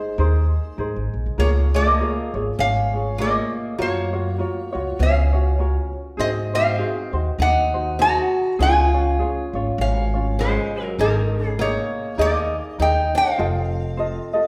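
A swung 4/4 lilt at 100 BPM carries this languid, relaxed Hawaiian excerpt in D-flat major, shifting to A-flat major at 11.0 seconds. Up front, a metallic, nasal resonator slide guitar played with fingerpicks sings the melody, while a boxy picked archtop guitar traces a second line with audible finger squeaks, a light thumb-plucked ukulele supplies accompaniment, and a woody, thumpy pizzicato upright bass on steel strings sits prominently beneath. The band plays live in one room, bathed in a lush studio reverb, moving through chords such as Db6, Gbmaj7 and Ab7 before closing on F7.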